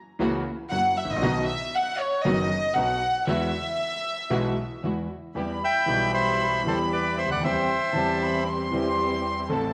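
Dramatic and melancholic, this rubato tango excerpt at 116 BPM opens in E major, where a clear, deep-bassed grand piano accompanies, dark, woody string stabs sit in the background, and a violin section with a gut-string, period-style tone and light vibrato carries a second line up front from 0.7 s. At 5.4 s the music turns to E minor, and a reedy bandoneon takes the melody from 5.6 s to 8.4 s. The whole is bathed in a wet echo-chamber reverb with small-room ambience.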